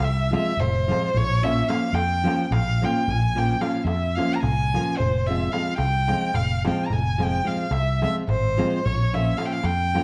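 A smooth, vibrato-laden bowed violin leads up front in this fiery, virtuosic Balkan wedding-band folk excerpt in 7/8 at 218 BPM in F harmonic minor, carried by a round, amped fretless electric bass and a fingerpicked classical nylon-string guitar with fresh strings and finger squeak that enters at 0.3 s, while a compressed, saturated clay-shell darbuka played with soft hands sits in the background of a dark production with moderate recital-hall reverb.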